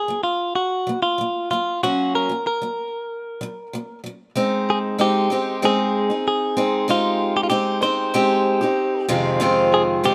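Heartfelt and sunny, this short pop excerpt in a straight 4/4 pairs a twangy, compressed clean electric guitar carrying the melody with a picked acoustic archtop guitar picking out the accompaniment, both sitting up front in light reverb. The archtop's fresh strings give it a crisp sparkle, while the direct-recorded electric has a bright, clean edge. The harmony moves from Gbmaj7 to Abmaj7 at 4.4 seconds as a new section begins, then settles on Fm7 at 9.1 seconds.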